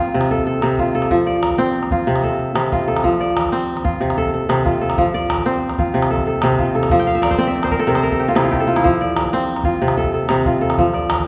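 Flowing and hypnotic, this West African traditional excerpt in 12/8 at 124 BPM in F major sets a ringing, crisp, up-front kora spinning fingerpicked arpeggios from C3 to A5 over a small, band-limited calabash that enters at 0.2 seconds, with a kora fill from 6.9 to 8.8 seconds, all bathed in a wet recital-hall reverb.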